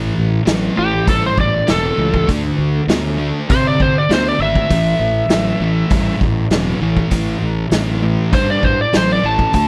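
A thick, double-tracked fuzz guitar riff and a growly, overdriven fingered bass open this heavy, brooding blues rock and southern rock fragment, joined at 0.5 seconds by a vintage drum kit of hi-hat, punchy kick and medium-tuned snare in a small, pumping room, and at 0.8 seconds by a bright, up-front overdriven slide guitar carrying the melody over A5 and D5 chords in a dry, close sound.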